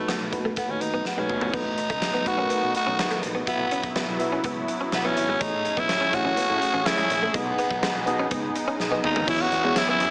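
This excerpt is 1980s-style pop in E major at 124 BPM in a straight 4/4, romantic and glossy in mood. A raspy, gritty tenor saxophone carries the melody up front with vibrato, riding over a glassy, bell-like FM electric piano whose warbling chorus gives the accompaniment a vintage shimmer. Underneath, a growly fretless electric bass anchors the low end while a very quiet, clean, direct-recorded electric guitar picks out a compressed riff. A huge arena drum kit with a fat snare, punchy kick, hi-hat, crash, toms and tambourine is drenched in gated reverb, with drum fills at 1.1 and 8.8 seconds. At 1.5 seconds a brassy, detuned sawtooth pad enters in the background with a soft attack, filter sweep and chorus, holding sustained chords as the harmony moves from B7 through Esus2/B, Amaj7 and G#m/B to an E6. The mix sits in a moderate scoring-stage reverb but comes through with a small-speaker character.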